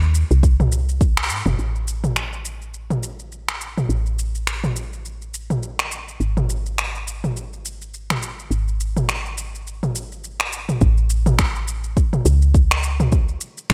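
A swung 16th-note groove at 104 BPM in 4/4 drives this earthy, hypnotic organic downtempo excerpt, where an up-front, overdriven deep house drum kit of finger snaps, shaker and toms with gated reverb runs throughout alongside a soft, round, dark FM bass with tube saturation and sidechain pumping, while a deep, overdriven electronic kick drops in at 0.4 s and returns at 10.8 s, all set in light digital ambience with a bright 1980s-style sheen and a band accent at 1.2 s.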